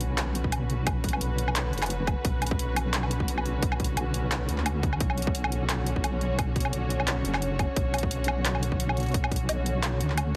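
Spacious and heavy, this half-time drum and bass excerpt at 174 BPM in B minor sits on a single Bmadd9 chord, with veiled, con sordino studio strings holding sustained chords under 12-bit sampler grit and sidechain pumping, a deep, detuned sawtooth-and-sine wobble bass with chorus sitting up front, an overdriven kit of bright hi-hats, handclaps and woodblock, and a hard-clipped electronic kick entering at 0.4 seconds, all set in light reverb with a heavily compressed radio-style sound.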